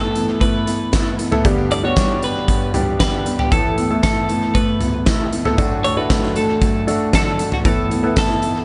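An uplifting, anthemic piano-driven pop excerpt at 116 BPM opens with a clear baby grand piano and a twangy, compressed twelve-string electric guitar melody, both carrying tape echo, over a fingerpicked steel-string acoustic guitar riff set back in the mix, before a huge arena drum kit with a fat snare and punchy kick joins up front at 0.2 seconds alongside a jingly vintage tambourine in the background, all moving through Asus2, G and D in an echo-heavy, lightly reverberant mix with a rolled-off top end.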